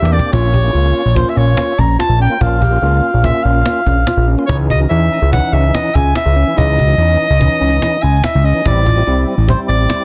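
A dense, heavily limited modern mix sits in a moderate studio reverb in this ten-second excerpt from a longer progressive instrumental. The band moves in 5/4 at 144 BPM with a straight, intricate and brooding feel, opening with a short cajon fill before the chords pass from Bbm to C#madd9 and then Am7. Up front, a mellow soprano saxophone carries the melody between C5 and Bb5, its vintage, classical-style tone touched with light vibrato and a delay. The fat analog bass is the loudest part, a thick, nasal sawtooth-and-square sound with detuning, a filter sweep and a moving notch, holding low between A1 and E2 with a fast attack and sustained notes. A tonewheel organ, lightly overdriven through a fast rotary speaker, fills in the accompaniment, while a clean tine electric piano plays arpeggios in the background through its built-in speakers. The cajon rounds out the band with a snappy, snare-laden acoustic sound, miked close and struck with hard hands.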